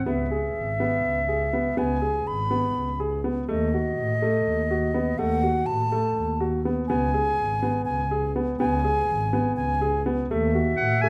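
An airy, crisp-attacked baroque flute carries the melody in straight tone through this hypnotic, urgent contemporary chamber piece in 7/8, cut from a longer work at 246 BPM counted in eighths and set in C# minor. A polished baby grand piano supplies present arpeggios beneath it, while a woody, bowed double bass adds dark low-end with vibrato over harmony moving from C#m7 to D#dim. A bright classical clarinet sounds only at 0.0 seconds and again from 10.8 seconds as a second line, and all four parts sit up front in a moderate recital hall reverb.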